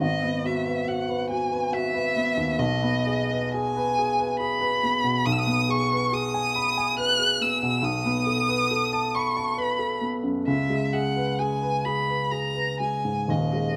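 In a rubato 3/4, this romantic classical fragment for violin and baby grand piano unfolds with an elegiac, yearning mood, both parts sounding together across its 13.8 seconds. A single bowed violin carries the high melody with a rich, expressive tone full of vibrato and portamento, while the dark, mellow piano accompanies across a span reaching from the deep bass up into the treble, with long sustain and audible action noise. Close, detailed microphones and light reverb keep the two instruments up front, with the piano sounding intimate.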